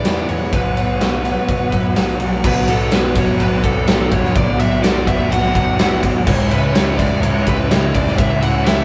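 Dreamy and hazy, this short cut from a longer shoegaze and dream pop rock piece moves at 125 BPM in a straight 4/4, centred on B minor. A big, natural-sounding acoustic drum kit sits up front with a punchy kick, a medium-tuned snare, crash and ride, while a very quiet, jingly tambourine adds close, dry shimmer. A thick fuzz guitar and a lo-fi overdriven garage guitar in the background carry the riffs, joined from 0.1 seconds by a dark, round, growling picked bass, and a fuzz-drenched lead guitar plays the melody between A4 and F#5 throughout. During the opening 2.4 seconds, over E and Bsus2 chords, a hollow, flute-like pad with chorus hovers softly behind the band before dropping out as the music settles onto Bm and later moves to C#m at 6.3 seconds. The whole thing sounds like a rough rehearsal-room take, dulled at the top end and wrapped in a moderate stone-room reverb.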